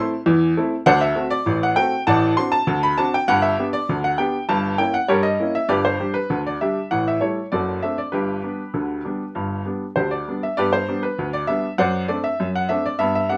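A clear, woody upright piano plays alone and up front in this cheerful, jaunty ragtime fragment, taken from a longer piece. Its smooth, vintage tone has a short sustain, and the playing spans the instrument from deep bass to bright upper register. Set in a straight two-beat metre, the harmony opens on A minor and D7 before settling into G, passing through a diminished chord and an A7 to D7 turn that leads home again. Around 10.6 seconds the opening strain begins once more, and the passage breaks off at 13.4 seconds. A moderate studio ambience gives the piano a modest sense of space while keeping it close and distinct.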